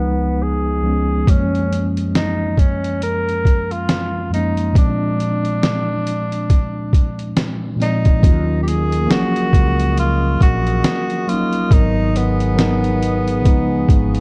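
Dark, dry production frames this nostalgic, reflective lo-fi hip hop excerpt in Eb minor at 69 BPM with swung 16ths: a breathy, whispered tenor saxophone with vibrato and scooped notes carries the melody over a mellow tine electric piano colored by cassette tape, while a filter sweep runs through the opening section; a muffled, pitched-down sampler-style drum kit with a thumpy kick enters at 1.3 seconds, a round fretless electric bass joins at 8.2 seconds, and a warbling square-wave pad with chorus and its own reverb enters in the background at 8.6 seconds as the chords move from Db7 through Gbmaj7 and Bb9 to Ebm7 and Abm7.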